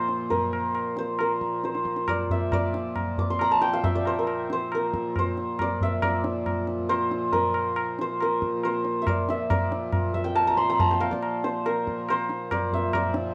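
Hindustani classical music in raga yaman on Bb, meditative and serene, moves in 4/4 at around 138 BPM and gradually speeds up across this 13.3-second excerpt from a longer piece. An up-front hammered santur carries the melody with a shimmering, ringing tone, while a reedy, nasal hand-pumped harmonium holds a breathing drone in its low register and a close, dry, low-tuned tabla with short ring keeps time from 0.1 seconds. The whole recording sits in a studio reverb and carries the worn, warbly pitch drift of old cassette tape, with the music shifting into a new section at 6.0 seconds.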